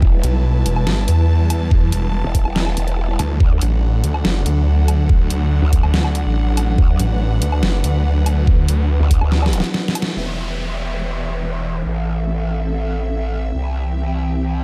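The mix sits in light reverb, with the growl bass and the snarling saw bass pushed up front in an aggressive, menacing slice of heavy wobble dubstep in a half-time feel, cut from a longer piece. The drop opens the recording: a knocking, tape-tinged electronic kick and an overdriven dubstep kit of hi-hat, deep snare and woodblock, re-recorded in a small room, drive beneath two bass layers. The growl bass is a detuned, chorused, formant-filtered wobble, while the saw bass adds a bright, resonant unison snarl with a moving notch and saturation. Behind them a lush, bowed symphonic string section holds expressive vibrato chords with a soft attack, pumping against the sidechain throughout. A drum fill and a band accent at 10.0 seconds close the drop, and the saw bass, kick and kit fall away by 10.1 seconds. The strings and growl bass carry on into a sparser passage, where a faint electronic downlifter sinks in from 10.2 seconds.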